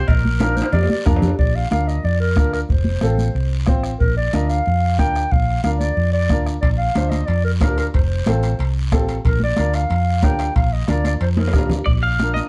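A twangy clean electric guitar with spring reverb and slapback echo opens this sunny, danceable cumbia excerpt at 183 BPM in Bb major, quickly joined by a round, punchy hollow-body bass up front, a soft-beater bombo, high-tuned congas in the background, a raspy guiro, and ringing vintage cowbell and timbales, with a drum fill arriving at 0.4 seconds, before a breathy, intimate clarinet takes a jazz-style solo from 1.4 seconds over a woody, slightly detuned upright piano and Bb and F chords, with the guitar returning briefly at 11.9 seconds, all set in a dark production with light reverb.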